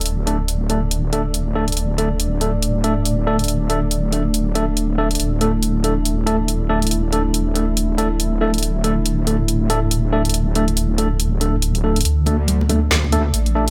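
A saturated, sawtooth wobble bass with chorus sits up front through this heavy, brooding deep dubstep excerpt at 140 BPM in half-time with a swung feel, under a detuned, slow-attack analog pad with chorus, a deep house kit of woody snare and dark hats, clean tine electric piano stabs through low-pass filter and dub echo that enter at 0.3 seconds and get a filter sweep in the build-up from 12.1 seconds, and thick-skinned, high-tuned congas with dub echo appearing in the background at 12.3 seconds, all in light reverb.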